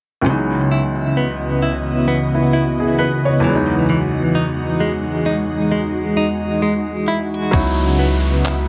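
Contemporary R&B in C# minor at a slow, swung 66 BPM, longing and moody, where a felt-muted upright piano with audible action noise and a clean, direct-recorded electric guitar arpeggiating through tremolo and delay sit up front over an ethereal, detuned pad with ensemble chorus, moving from C#m11 to Emaj9 before a deep, sine-like 808-style bass, a thumpy, tape-tinged 8-bit drum machine with handclaps and kick, and a downlifter all arrive at 7.5 seconds as the chord returns to C#m11 in this short cut from a longer piece.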